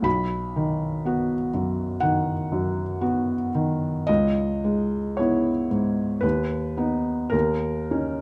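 Mournful and wistful, this brief passage from a longer classical piece is a romantic nocturne for solo piano, moving in 4/4 with a loose, rubato feel. A felt-muted upright piano plays throughout, spanning B1 to B5, its tone soft, mellow and vintage, with the thin felt lending an intimate, hushed character. The harmony settles on B, shifts to C#m7 at 4.1 seconds, passes through B/D# and closes on D#5. Close, detailed microphones place the instrument up front, capturing a smooth surface. A moderate recital-hall reverb gives the notes a gentle halo of space.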